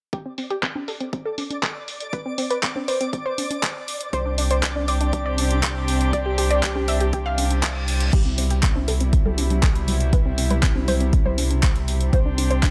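Euphoric and hopeful, this progressive house excerpt moves at 120 BPM in C major, opening with a nasal, wave-folded analog pluck playing arpeggios under a filter sweep with chorus, dub echo and sidechain pumping, over a deep, tape-warm electronic kick, a deep house kit of filtered hats, handclaps and crash, background congas, and a twinkling granular texture with an octave-up shimmer. At 4.1 seconds a round, up-front analog bass on a low C and a distant, reedy string section with light vibrato holding sustained chords join, both pumping with the sidechain, as the harmony moves from Amadd11/C to Gsus4/C. A reverse cymbal rises into 8.1 seconds, where the chords open onto Cmaj7 in a dry, close mix.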